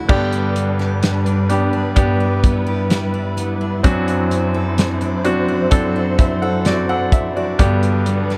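Set in a small room, this cut from an emotional, heartfelt pop ballad in G major at 64 BPM, tuned to A4 = 436 Hz, places a polished, up-front baby grand piano over veiled, con sordino strings holding lush sustained chords with vibrato, while a full-bodied steel-string acoustic guitar picks arpeggios in the background and a dark, smooth studio drum kit with a punchy kick, crash, hi-hat and snare joins at 0.1 s as the harmony moves from G to D7/F# and back to G.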